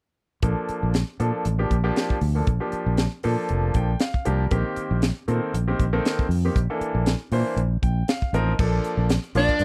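A brilliant, intimate grand piano with audible action noise and long sustain accompanies this slick, funky electric jazz fusion excerpt at 118 BPM with a light sixteenth-note swing in Bb major, adding fills at 3.5 and 7.6 seconds over a warm fingered electric bass and a dry, tight funk kit with a high-tuned snare, before a subtone soprano saxophone and a dark, overdriven picked guitar enter at 9.4 seconds, all in a close, small-room 1970s-style studio sound.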